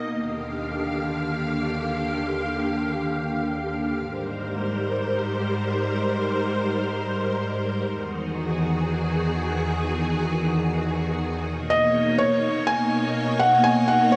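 Glitchy and intricate in mood, this IDM excerpt drifts in free time in A-flat Lydian, built on a silky string machine with a slow attack and long release whose ensemble chorus carries sustained chords from the start through 14.2 seconds, moving from Ebmaj9 to Abmaj9, Emaj9 and Bmaj9. At 11.7 seconds a felt-muted upright piano enters up front with a mellow, intimate melody, its thin felt and audible action noise trailed by digital delay. A lush hall reverb surrounds the recording, and the excerpt is cut from a longer piece.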